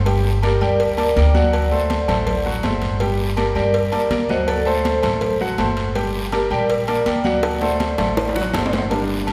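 A bright, metallic vibraphone with medium-hard mallets and a medium motor vibrato carries the melody from 0.4 s in this driving, passionate salsa excerpt, over a clear, polished baby grand piano and a woody, thumpy upright bass whose dark gut-string pizzicato sits up front as the harmony moves between Gm and D7. The percussion section fills out the groove with tight, high-tuned cowbell and bongos, soft-handed congas and metal-shell agogo bells and timbales set in the background, and a raspy guiro, with a drum fill arriving at 7.4 s. The whole recording is bathed in a wet church reverb that gives it the spacious sound of a large hall.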